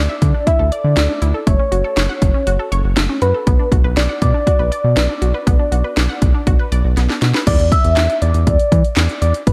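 Set in light reverb and a digital ambience, this cool, nocturnal synth-pop excerpt at 120 BPM pairs a gentle, keys-like FM lead carrying the melody with chorus, phaser and tape echo over bright, detuned unison pluck arpeggios with tape echo that stop at 7.4 seconds, a round, deep analog bass up front, and an overdriven house drum kit with punchy kick, cracking snare, handclaps, hi-hat, crash cymbal, gated reverb and a fill at 7.0 seconds, as the chords move from Dsus2 through F#m and Bm to Dsus2/E.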